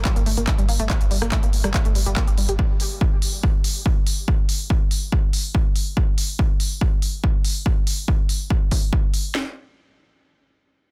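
A punchy kick and cracking snare sit up front in this dark, hypnotic slice of driving peak-time techno. Their layered electronic sound is tape-warmed and re-recorded in a small room. Smooth hi-hats, handclaps and rim clicks fill out the kit, with sidechain pumping on the hats and cymbals giving the straight groove a steady breathing motion. For the opening 2.6 seconds, a deep, thick, saturated sine sub bass sustains low under the beat, pumping with sidechain compression and shaded by a low-pass filter. Over it, an analog pluck riff with a fast attack and short decay blends detuned sawtooth, square and triangle tones with a noise layer and ring modulation. The pluck's bright, round tone carries a filter sweep, chorus, cassette-tape coloring, sidechain pumping and dub echo. Cut from a longer piece, the recording is dry and densely limited, with the drums running on until just past 9.2 seconds as a new section begins.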